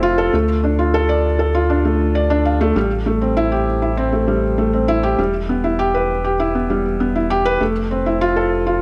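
A steady, straight 4/4 pulse carries this melancholic, moving fragment of piano and strings electronica, where a soft, felt-muted upright piano with audible action noise plays an intimate riff up front through tape echo, a deep, round analog bass sits dark beneath it, and a moderate recital hall reverb frames the chords as they move from Dm through Am7 and Em to Fmaj7.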